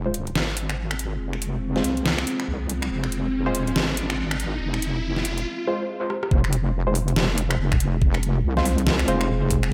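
Soaked in lush hall reverb, this dreamy, meditative excerpt of deep dubstep moves with a swung, half-time feel as a saturated, detuned wobble bass sits up front beneath muted, evolving chord stabs trailing dub echo and a dark, moody ambient pad held in the background. A produced dubstep kit of finger snaps, metallic hi-hats, rim clicks and a deep snare drives the build-up while an electronic riser climbs from 1.5 to 5.5 seconds. A drum fill at 6.1 seconds tips into a heavy drop at 6.3 seconds, where a knocking electronic kick joins the mix.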